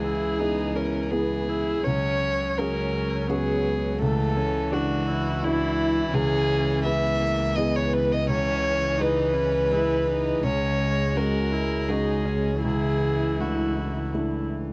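Close, intimate bowed strings sit in light reverb on this reflective, longing neoclassical fragment in a rubato 3/4, its harmony moving from C#m7 through F#sus2/C# and Dadd9/C# to E/C#. Up front, a dark solo violin carries the melody with light vibrato and a smooth top, played sul tasto, while a double bass bows a single low C# with an airy tone. A woody viola adds accompaniment, a nasal, floating cello traces a second line in the background, and a vintage upright piano with audible action noise and long sustain fills in behind them.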